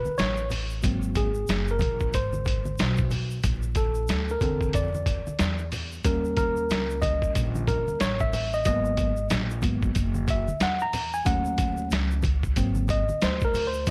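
Jazz-hop excerpt with a cool, mellow swing, led by a worn, slightly out-of-tune tine electric piano soloing up front with light overdrive over woody, dark pizzicato upright bass, a muffled, pitched-down sampler-style drum kit with thumpy kick and medium-tuned snare, soft close congas and tube shaker in the background, and a light digital ambience dusted with vinyl crackle.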